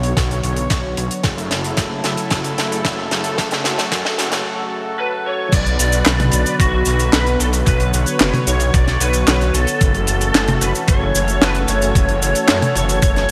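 A drum fill on a dry, dark acoustic reggae kit with a high-tuned snare opens this nostalgic, moody synthwave excerpt in B minor at 112 BPM, over a smooth, slow-attack sawtooth pad with chorus and sidechain pumping and a thick, detuned unison saw bass with tube saturation; a thumpy, tape-toned electronic kick joins at 0.2 seconds, a brief break arrives at 4.5 seconds, and at 5.0 seconds an overdriven, lo-fi lead guitar picked through a small cranked amp, with ensemble chorus and delay, carries the melody over Bm and F#m7 chords, all set in a lush hall reverb with bright 1980s-style digital production.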